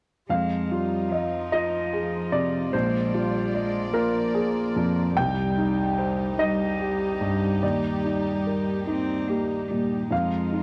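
The recording has a dry, close 1970s-style studio sound with light reverb, and this passage is cut from a longer neoclassical piece for piano and strings. It moves slowly and freely at 49 BPM in a rubato 6/8, carrying a longing, melancholic mood, tuned to A4 = 439 Hz. A clear grand piano sits up front as the accompaniment, its notes ringing with long sustain. A single bowed cello carries a second line, played sul tasto with a soft attack and a pure, floating tone that seems distant. Behind them a chamber string section holds sustained bowed chords, sul tasto, intimate and warm with light vibrato. The harmony moves through Fm7, Bb7, Cm and Ebmaj7 before returning to Fm7, with all three parts sounding together from 0.3 to 10.6 seconds.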